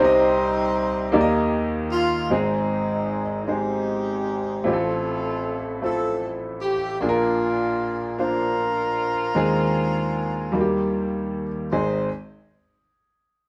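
A gospel band plays live in one room with moderate studio reverb, and this hopeful, uplifting passage in 6/8 is cut from a longer piece. Up front, a mellow horn section carries the melody in a jazz style, with light vibrato and soft attacks, from the opening until 12.1 seconds. Alongside it, an intimate baby grand piano with audible action noise supplies a clear accompaniment over a broad range, moving from C minor through Eb, Ab and Bb chords before arriving on Ab at 11.7 seconds.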